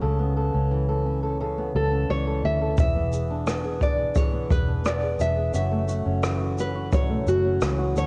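A dark, fingerpicked steel-string acoustic guitar and a round, foam-muted vintage electric bass open this sunny, heartfelt acoustic pop excerpt at 87 BPM, with the nylon-string guitar entering at 1.8 seconds to carry a full-bodied, fingerpicked melody and a jazz brush kit joining at 2.8 seconds with a boomy kick, rim clicks and shaker under a rolled-off top, while the guitars and drums carry a cassette-tape grain and light studio reverb over a home-recorded, up-front sound as the chords move from Aadd9/C# through E7 to F#m7.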